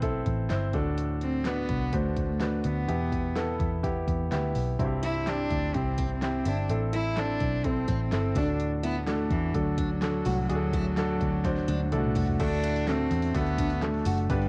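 A single bowed cello carries the melody from 1.2 seconds, played sul tasto with a soft attack, light vibrato and an airy, intimate tone heard close up, giving this piano-driven pop fragment a hopeful, anthemic lift. Beneath it, an up-front grand piano supplies polished, short-sustained accompaniment over a round, foam-muted electric bass that sits dark and amped at the front of the mix. A deep house drum kit brings a deep kick, fat snare, dark hats, handclaps, crash and toms in a layered electronic groove with a straight 4/4 feel. A drum fill between 11.4 and 12.4 seconds leads into a new section. Later, a picked steel-string acoustic guitar adds a riff set back in the mix, with an auditorium character. The harmony moves through Am, D, Em and C, while cassette-tape coloring on the piano, drums, cello and guitar, plus studio reverb, lends a homemade, vintage haze.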